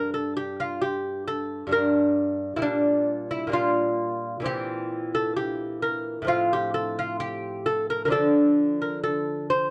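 Grave and introspective, this short fragment of a classical, baroque-style dance at 66 BPM in 4/4 and F major unfolds with a rubato feel as a solo lute, tuned to A4 = 438 Hz, is fingerpicked on nylon double strings with some octave-doubled courses, its bright, delicate tone sitting up front in light reverb within a dark production while the harmony moves from Gm through Gm7/Bb, C7/Bb and F/A to Dm.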